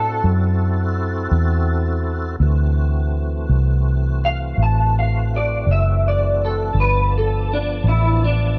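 A gritty, soulful slow blues in 12/8 at 55 BPM opens with guitar, organ and bass together. A picked electric guitar through a small old amp, slightly broken-up and compressed, carries the melody up front with ensemble chorus and analog delay over sustained tonewheel organ chords that are full and lightly overdriven, turning with chorus vibrato and a slow rotary speaker, while a dark, round, punchy foam-muted electric bass sits prominently underneath. The harmony rests on D9 before shifting to G9 at 6.7 s, in an echo-heavy mix with light reverb, tuned to A4 = 439 Hz and cut from a longer piece.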